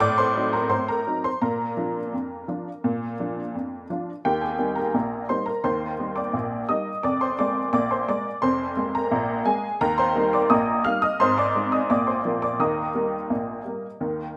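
A detuned, jangly honky-tonk upright piano plays solo and up front in this jaunty, playful ragtime passage in Eb major at 86 BPM in a straight 2/4, cut from a longer piece, spanning F1 to F6 with a bright vintage tone as it opens on an Adim7 before settling into a second section at 4.2 s that moves from Eb through Bb7/F and Ab back home to Eb, all wrapped in a moderate, lush hall reverb within a rough home demo mix.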